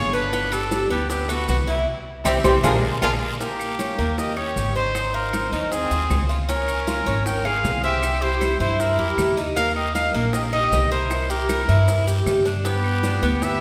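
This Cuban son and guajira cut, taken from a longer piece, moves at 156 BPM in a straight 4/4 with a sultry, danceable mood. A clear solo trumpet with vibrato and a smooth top carries the melody in a pop style. A rich chamber violin section, bowed with light vibrato and an earthy, biting edge, plays a second line beneath it. The bright, metallic Cuban tres picks arpeggios on double strings, some doubled at the octave, while an up-front upright bass plays pizzicato on dark, thumpy gut strings. Round, low-tuned bongos struck with soft hands, a raspy guiro and grainy maracas sit in the background, while very quiet woody claves sound close. The harmony travels from G through Eb7, Ab6 and Db6 before returning to G, with a band accent from 1.9 to 3.4 seconds, all heard in the wet reverb of a church or concert hall.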